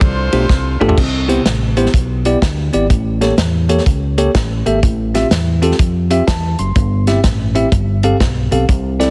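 A bell-like tine electric piano rings bright and clean through its built-in speakers from 0.3 s, carrying the chords of this jubilant, uplifting uptempo gospel cut at 125 BPM in C major, with a swung 4/4 feel. An edgy saxophone section with light vibrato opens with a brief punchy melodic figure that ends at 0.9 s, as a drum fill leads into the main section at 1.0 s. Underneath, a dark, round fingered electric bass and a roomy soul drum kit with a punchy kick and rolled-off top sit up front, all wrapped in light reverb and a heavily compressed radio-style sound.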